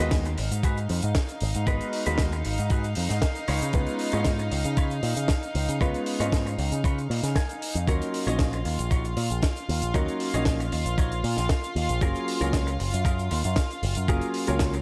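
A thumpy, sampler-style electronic kick sits up front in this groovy, sleek nu-disco excerpt at 116 BPM in G# dorian, joined by a punchy envelope-filtered picked bass, a dry funk kit with hi-hat and a high-tuned snare, a faint vintage egg shaker, a warm grand piano accompaniment washed in diffuse ambient delay, soft-attack bowed strings pumping distantly under sidechain, and a twangy, compressed clean guitar riff in lush chorus that adds a fill at 7.1 seconds, as the chords move through G#m7, C#7, D#m7 and F#maj9 within a light reverb.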